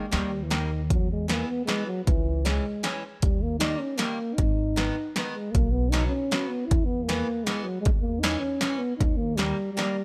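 A dark, up-front euphonium opens this jolly, festive alpine folk dance in three-time, singing a smooth-topped solo melody with light vibrato in a classical style over a bright, boxy parlour guitar that is picked as accompaniment. A woody, warm pizzicato upright bass and a punchy, tape-toned analog drum machine of kick, snare and hi-hat join at 0.1 seconds. The drum machine sits up front with a small-room character, and light reverb frames this short cut from a longer piece as the harmony moves through D#, E, C#m and G#m.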